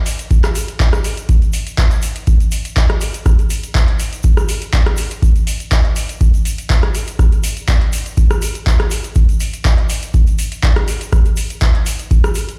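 A raw, hypnotic house groove at 122 BPM with a light 16th-note swing opens on a booming analog drum machine of metallic hats, handclaps and rim clicks beside a grainy, bright, compressed and saturated tube shaker in the background, joined at 0.3 s by a deep, tape-warm electronic kick sitting up front, all heard as if through a big sound system in a bare stone room.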